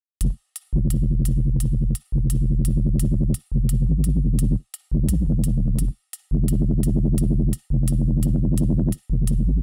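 A swung half-time groove at 172 BPM in 4/4 frames this cinematic, spacious drum and bass excerpt in F minor, where a deep, dark wobble bass with a chorus sheen sits up front from 0.2 to 9.6 seconds beneath a crisp electronic hi-hat that carries a large-room sound, all in a dry mix with little reverb.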